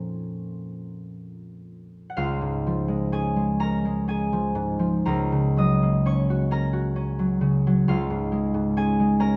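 This is a classical solo harp piece in Db major, cut from a longer work, with a mysterious, wistful mood. It moves slowly in 6/8 at around 38-45 BPM, counted in dotted quarters, and its rubato feel lets each phrase breathe freely. A concert harp plays alone throughout, its mellow, fingerpicked tone ringing across a range from Db2 to Eb6. The music opens on a Bbm chord and settles into Db at 2.2 seconds, then moves through Gb/Db at 5.1 seconds before returning to Db at 7.9 seconds. The acoustic harp sits up front, while a wet stone room reverb, heard from further back in the space, surrounds it with a one-second tail.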